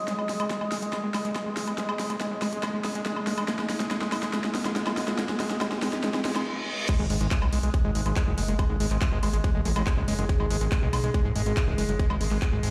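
Intense and hypnotic, this psychedelic trance excerpt builds over a very quiet wave-folded drone, a warbling lo-fi pad, a background riser with reverse cymbal, a squelchy distorted acid bass riff with dub echo and a huge-snared overdriven drum kit fill, then drops at 6.9 seconds as a tight, up-front electronic kick and a fat, detuned sawtooth analog bass join, all in a lush hall reverb.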